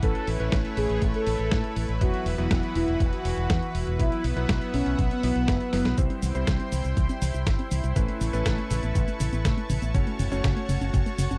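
Dry, close and tape-saturated like a 1970s studio, this romantic, sunny italo disco cut moves at 121 BPM, with a thumpy, gritty electronic kick and a dusty sampler-style kit of cabasa, hi-hat and medium-tuned snare under a punchy, up-front fingered electric bass with an envelope filter, clangy electric grand piano stabs with vintage 12-bit grit, and a lush, warbling detuned unison pad, while a mellow, brassy synth lead carries the melody with chorus and tape echo until 5.9 s, a drum fill lands at 5.7 s, and a soft, round pluck enters playing dark background arpeggios from 6.0 s.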